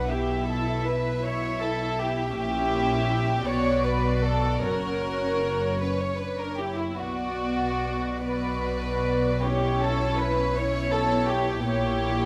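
In a rubato 6/8 at roughly 45-56 dotted-quarter beats per minute, this solemn, elegiac excerpt from a slow romantic movement for string orchestra unfolds in B minor, its harmony moving through shadowed diminished and suspended chords. Bowed sul tasto violins carry a floating, pure melody while a second violin line sits close and up front, over dark, woody, lush violas with vibrato. Soft-attack cellos and rich double basses anchor the bass in a moderate recital-hall reverb.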